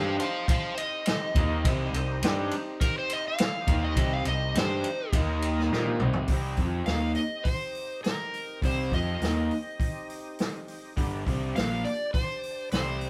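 A bright, overdriven slide guitar solo opens this heavy, brooding blues rock and southern rock excerpt in C minor at 103 BPM, over a lo-fi, double-tracked garage guitar riff, a growly fretless electric bass and a gritty tonewheel organ with key click and a slow rotary speaker sitting in the background, while a punchy vintage drum kit joins at 0.2 seconds and plays a fill from 5.7 to 6.3 seconds, all captured as a band playing live in one room with moderate reverb.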